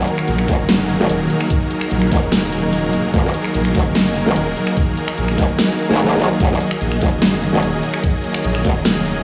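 Bright, detuned supersaw chords pump against a sidechain to open this heavy, menacing half-time wobble dubstep excerpt at 147 BPM in Eb minor, over an aggressive, overdriven growl bass and a nostalgic, warbling lo-fi pad sunk in the background, before a dubstep kit with finger snaps, hi-hat and a huge snare, a dark, nasal vowel-sweep wobble bass and a knocking electronic kick enter within the first second, the whole dreamy, reverb-soaked mix resting on a single Eb minor chord.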